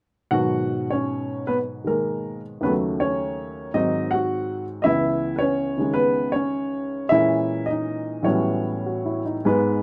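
A warm, woody upright piano carries this brief solo jazz excerpt, sitting up front with a short sustain that lets each chord speak and fade quickly. The mood is smoky and moody, set in G# minor at 106 BPM in 4/4, with a swung eighth-note feel loosened by rubato. The piano spans from C#2 up to F#5, moving through a progression that opens on G#m7 and passes through D#m7b5, G#7 and C#m7 before reaching A#m7b5 and landing on A13 at 8.3 seconds. Light reverb gives the instrument a touch of room around it, and the passage, cut from a longer piece, ends at 9.8 seconds.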